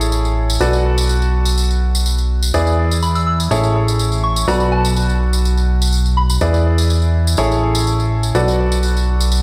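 This short cut from a longer piece sounds as though it is played over a big sound system in a bare room, with stone-room reverb and a light, small-room ambience around it. It is soulful, bittersweet piano house in B dorian at 124 BPM in a straight 4/4, cycling through Amaj7, Bm7 and E7. A clear, present grand piano sits up front playing a riff between E4 and D5, with delay trailing its notes. Beneath it, a fat analog bass, thick and detuned with a sawtooth edge and sustained notes, holds the low end from A1 to E2 and is the most prominent part. A close, acoustic tambourine keeps time throughout. From 3.0 to 6.4 seconds, a soft FM synth bell with pure, gentle, decaying tones adds a mellow melody high up between A5 and E6, set in the background with chorus and delay.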